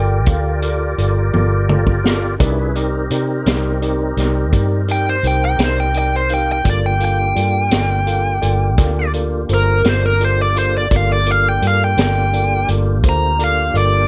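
A smooth, overdriven lead guitar solos up front through this brooding, mournful slow blues in 12/8, moving from Gm7 to Cm7 and back to Gm7 over a dark, round, foam-muted electric bass, a vintage drum kit with a punchy kick, a high-tuned snare, a rolled-off top and a fill at 1.3 seconds, a clean tine electric piano, and a clear tonewheel organ holding chords through a slow rotary speaker with chorus vibrato, all in light reverb.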